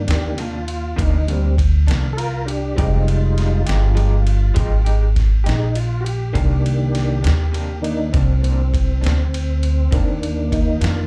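Brooding and mournful, this slow 12/8 blues, cut from a longer live club performance heard through the venue's PA, features a clear tonewheel organ solo on sustained chords colored by chorus vibrato and a slow rotary speaker, moving from Cm9 to Fm9 and back to Cm9 at 6.4 seconds, over a woody pizzicato upright bass sitting up front, a slightly broken-up electric guitar through a small old amp with tremolo and slapback echo, and a gritty, compressed sampler-style drum kit with a thumpy kick, ride cymbal and medium-tuned snare.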